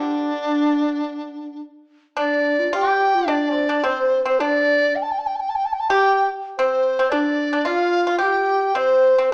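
A reedy large dizi, a hollow end-blown xiao and a bright pipa all sound together from the first moment of this brief, tender passage of Chinese chamber music, cut from a longer piece. The bamboo dizi carries the melody up front, its buzzing membrane and tongued notes colored by vibrato as the line ranges from D4 to A5. Beneath it, the xiao adds a mellow second line with a soft attack and its own gentle vibrato, staying between D4 and C5. The pipa, played with fingerpicks, supplies a dry, percussive lower voice from D3 to G4. At a moderate 109 BPM in straight 4/4 and the D yu mode, the wistful music moves from its opening phrase into a new section at 2.2 seconds that runs to the close at 9.3 seconds. A moderate recital-hall reverb surrounds the ensemble, though the overall sound has the narrow quality of a small speaker.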